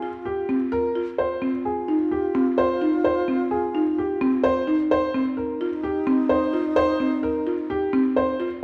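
Classical minimalist pattern music in a straight 4/4, this short excerpt from a longer piece feels hypnotic yet bright. A buzzing marimba struck with soft mallets carries the arpeggios, its hardwood bars sounding woody, round and dry, placed up front. A dark grand piano, also up front, plays the melody in a mellow, worn and intimate voice, boxy in tone, with its action noise clearly audible. A wooden-headed alto flute adds a second line that is airy, with a crisp attack and vibrato. The harmony opens on a rootless Ab69, moves to Cmadd11 at 1.2 seconds and arrives on Cm at 4.9 seconds, as all three parts play together throughout. A moderate recital hall reverb and a warm production surround the trio.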